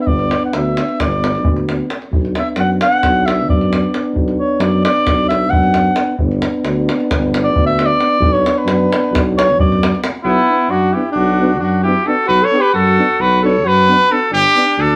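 Fiery and virtuosic, this Balkan brass band piece moves in a driving 9/8 and is cut from a longer performance. An alto saxophone with light vibrato takes a classical-style solo up front for the first 10.2 seconds, ranging across its register over a chord movement between G and B minor. Two euphoniums sit in the background as accompaniment, one dark with a soft attack and the other mellow, while a roomy, distant tuba holds down the low bass line. A tight, vintage, band-limited davul sounds close and present until 10.1 seconds. At 10.2 seconds a punchy trumpet enters with the melody in the second section, sitting loudest in the mix as the saxophone carries on beneath it. The whole band is heard from further back in a studio room with moderate reverb.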